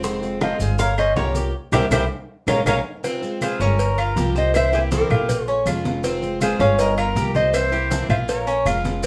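Opening on a picked steel-string acoustic guitar, a metallic, double-strung Cuban tres spinning arpeggios, a growly, thumpy upright bass up front, tight bongos and cowbell, damped low-tuned congas and grainy maracas, this nostalgic Cuban son and guajira passage brings in a small, fingerpicked nylon-string guitar melody, a breathy, reedy jazz flute second line and woody claves at 0.4 seconds, with a band accent from 1.5 to 3.0 seconds capped by a drum fill at 2.1 seconds, the whole group playing live in one room with wet studio reverb.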